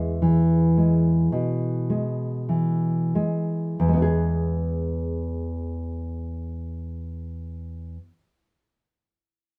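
Tender and warm, this short excerpt from a longer romantic piece for solo classical guitar moves in a slow, rubato 4/4 at 45-57 BPM in E major, tuned to A4 = 442 Hz, easing back through its opening 3.8 seconds before a second section begins. The nylon-string guitar plays alone from 0.0 to 8.2 s, ranging from E2 to G#4 with a dark, full-bodied, thumb-plucked tone placed up front. A light reverb gives the intimate sound a gentle sense of space.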